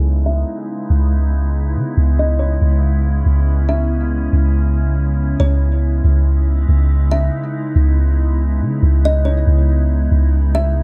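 A half-time 4/4 groove at 140 BPM anchors this hazy, ethereal hip hop fragment in C# minor, where a deep, round 808-style bass sits up front beneath a glassy FM pad holding a C#m7 chord through ensemble chorus, built-in reverb and a low-pass filter, with a filter sweep across the first 6.0 seconds, while a woody, hollow kalimba enters at 0.3 seconds with a melody of short thumb plucks softened by its own low-pass filter and tape echo, all in a dark production.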